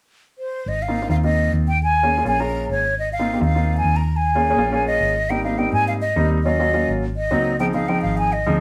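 Sunny and sophisticated, this short Afro-Cuban jazz excerpt moves at a brisk 208 BPM in a straight 4/4, set in Ab major. A breathy, mellow concert flute carries the melody from 0.4 seconds, close-miked and up front, its tongued notes colored with vibrato and a hollow edge. An electric bass with a dark, round, amped hollow-body tone joins at 0.7 seconds, and a grand piano with a gentle glow enters at 0.9 seconds to supply the accompaniment. The opening passage rocks between Ab6 and Eb7sus4, then the harmony opens up at 5.3 seconds through Abmaj7, Ebm7 and Ab7 before landing on Dbmaj7. The trio sounds like a band playing live together in one studio room, with a moderate ambience around the close, present instruments.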